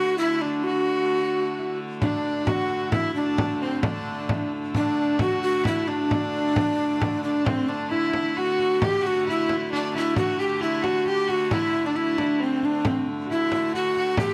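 Rustic and ancient in mood, this excerpt from a medieval dance moves at 133 BPM in 3/4 with a straight feel in D mixolydian. An up-front, breathy, mellow tenor recorder with vibrato and a hollow, woody chiff carries the melody, while a biting, distant fiddle and a ringing, fingerpicked concert harp in the background play second lines over the clear, earthy drone of a wheel-bowed hurdy-gurdy. A small, dry frame drum played with hard hands enters close at 2.0 s, and a second section begins at 7.5 s, all set in light reverb with detailed microphones.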